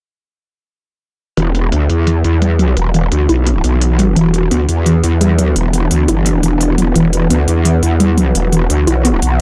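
Dark technical drum and bass at 172 BPM in E minor, this mechanical excerpt opens at 1.4 seconds on an E5 chord with a growling, saturated bass up front, crisp low-pass-filtered electronic hi-hats, and a warbly, lo-fi pluck playing filter-swept arpeggios through chorus and dub echo, before a swarming, tense drone joins at 3.0 seconds with evolving, phaser-treated sustained chords and its own filter sweep in the background, all under light reverb.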